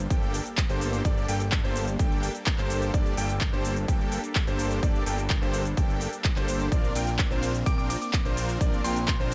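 Powerful and emotional, this festival progressive house passage in G minor drives along at 127 BPM in a straight 4/4, cut from a longer piece. A punchy, up-front electronic kick anchors the groove, joined by a layered big-room kit of crisp hi-hats, handclaps, cabasa and ride cymbal, its tape-warm tone re-recorded in a large room. A fat, thick analog bass with a filter sweep pumps through sidechain, as do the huge, detuned supersaw chords carrying the riff and a brilliant grand piano playing arpeggios in the background, both trailed by dub echo. Beneath them a lush, very quiet supersaw pad holds sustained chords with a slow attack and phaser, while a barely audible electronic impact lands at 0.5 seconds. The harmony moves from Gmadd9 to Bbadd9 at 6.7 seconds, and at 7.7 seconds a glassy, crystalline FM bell adds a short, warbling vintage melody coloured by chorus, phaser and echo, all set in light reverb.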